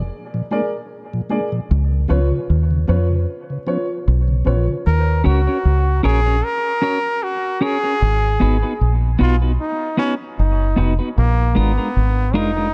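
A brilliant, forceful trombone carries the solo melody from 4.9 seconds in this hypnotic, deep reggae fragment cut from a longer piece, its scooped notes and light vibrato sitting up front in a pop style, trailed by dub echo. Before it arrives, an opening break pairs a soft, flute-like tonewheel organ, mellow with chorus vibrato and audible key click, with dark, boxy grand piano stabs that carry their own dub echo. Beneath both sections, a round, foam-muted fingered electric bass plays from start to finish, punchy and up front. A clean, compressed electric guitar joins the accompaniment at 5.2 seconds, its fingered part colored by tremolo and dub echo. Swung sixteenths give the groove a gentle lilt, while light reverb and small room ambience keep the setting close and intimate.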